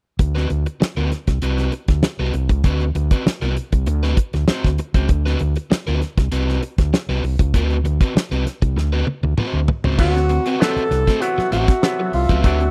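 Funk with a gritty, dry 1970s studio sound, this cut from a longer piece opens at 0.2 s on a D6 groove. The damped drum kit sits up front with a fat snare and tight kick, working crash, hi-hat and toms. Beside it, the overdriven fingered bass is dark, round and amped, also up front. A crunchy, picked, overdriven guitar fills in the accompaniment. A drum fill at 8.8 s leads into a new section on D13 at 10.0 s, where a breathy, close-miked alto saxophone takes the melody with vibrato, scooped notes and a soft, intimate, whispered jazz tone, while a stringy auto-wah clav adds bright stabs through a combo amp. Shortly after, a twangy, clean electric guitar riff with lush chorus and a smooth-topped horn section with light vibrato join from the background.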